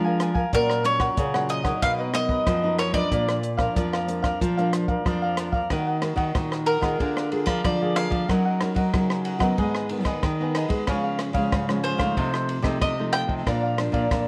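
Samba and choro in a yearning, bittersweet mood, cut from a longer piece and heard through light reverb with the worn, warbling pitch drift of old cassette tape. A fingerpicked, warm classical nylon-string guitar and a crisp, picked cavaquinho supply the accompaniment, while a second full-bodied nylon-string guitar, with fresh strings and audible finger squeak, carries the bass alongside a compact cocktail drum kit with a punchy kick, dark cymbals, hi-hat and rim clicks in a dry, up-front sound. A bright, double-strung bowl-back mandolin enters at 0.5 seconds with the melody and takes a solo from 5.7 seconds.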